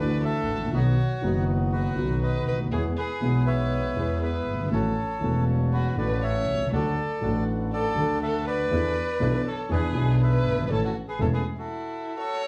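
A rubato 4/4 tango pulse at 120 BPM in A major sets an elegant, nostalgic mood in this fragment of a longer piece, heard from further back in a reverberant studio. A reedy, airy bandoneon carries the melody over a rich, boxy bowed violin second line full of vibrato and portamento. A dark, mellow concert grand piano sits up front with deep bass, a warm bowed double bass sounds distant and expressive with sliding pitches, and a vintage, band-limited second bandoneon plays stabs in the background. The harmony passes through E7sus4 and E7 to settle on A. At 11.4 s the piano, bass and stabs stop, leaving the bandoneon melody and violin alone until 12.5 s.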